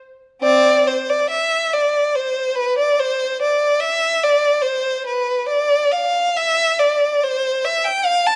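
Lyrical and serene, this short passage of classical music is cut from a longer piece for unaccompanied violin. A single bowed violin plays alone from 0.4 to 8.4 seconds, moving freely in rubato within a 4/4 metre at a tempo between 48 and 75 BPM. Its rich, focused tone carries vibrato as the line ranges from C4 up to A5. Placed up front and captured by close, detailed microphones, the instrument sits in a moderate recital hall reverb that gives each phrase a gentle halo of space. The result feels intimate and expressive.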